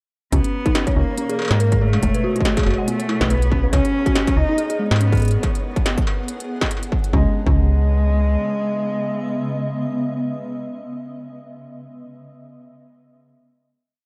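IDM at 141 BPM in C# minor, glitchy and eerie, built on a swung groove where a distorted, up-front electronic kick and a glitched industrial kit of clanging snare, crisp hats and struck metal drive a skipping, syncopated metallic FM bass through a looping C#m9, G#m9, F#m9, Bm9 progression. A dark, detuned synth bell spins a 9-step arpeggio loop that drifts against the bar, thickened by chorus and tape echo, while a blurred granular cloud pad pumps beneath and a faint flickering grainy texture holds a high C#5. A distant, bowed cello with vibrato carries arching motifs through delay from 0.3 seconds. The industrial kit drops out at 7.1 seconds as a final C#m9 chord arrives, and the kick, bell and bass follow shortly after, leaving the cello and pad to hold the chord, all in a dark, dry production.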